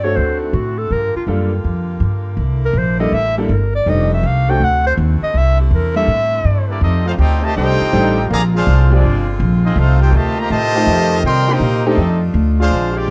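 A clear, vibrato-laden clarinet solo with scooped notes leads this joyful big band swing passage at 163 BPM, backed by an up-front woody pizzicato upright bass, grand piano accompaniment and tight, edgy saxophone section chords. At 6.7 seconds the clarinet gives way to a brilliant trumpet section carrying the melody in F major, while a distant, roomy trombone section adds a second line in the background. The piano drops out at 12.0 seconds, and the dark production with light reverb gives this short cut from a longer piece a swinging lift.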